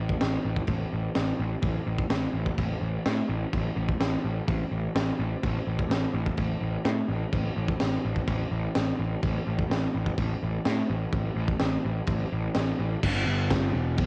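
A fuzz-drenched picked electric bass anchors this swaggering, rowdy garage rock excerpt, its overdriven tone dark, round and punchy as it sits up front from 0.0 seconds. A crunchy breakbeat drum kit joins at 0.1 seconds with a punchy kick, a high-tuned snare and crash cymbal, its gritty, saturated cassette sound carrying a rolled-off top. The straight 126 BPM groove in 4/4 is dry and close, with the feel of a home cassette recording, and it shifts into a new section at 13.0 seconds.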